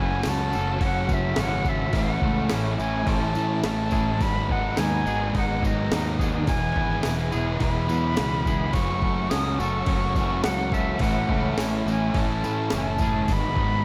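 A distant, pure-toned concert flute with vibrato and digital delay sings a blissful, wistful melody from the first moment over a very quiet, twangy clean guitar arpeggio, a biting overdriven guitar riff washed in reverse reverb, a dark fuzz guitar riff with subtle chorus in the background and a growling overdriven fingered bass, joined at 0.2 seconds by a gritty, tape-warm breakbeat sampler-style kit with a thumpy kick and at 0.3 seconds by a jingly tambourine, in this 106 BPM shoegaze and dream pop rock fragment drifting through F#m7, Amaj7, G#m7 and Eadd9 in light reverb.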